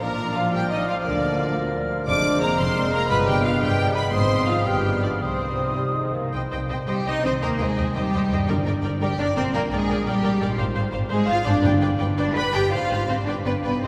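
In a lilting 6/8 that moves at roughly 104-119 dotted-quarter beats per minute with a rubato give and take, this spirited classical passage in C minor is a lively slice of a longer orchestral work. A warm, lush violin section carries the melody with focused vibrato, while a second violin section adds a rich, bowed counter-line beneath it and a smooth viola section fills in accompaniment further back. In the opening stretch, an airy silver flute floats high above and a bright, close-miked clarinet adds another line, both dropping away by 6.1 s, as a mellow bassoon adds accompaniment and a very quiet, distant French horn section holds sustained chords. A ringing, fingerpicked harp runs arpeggios throughout, and the cellos and the more distant double basses anchor the bass with even, bowed tone. Hard-mallet timpani, close and dry, first strike at 8.5 s and return for the closing bars over harmony that leans toward G, all set in a long, wet cathedral reverb.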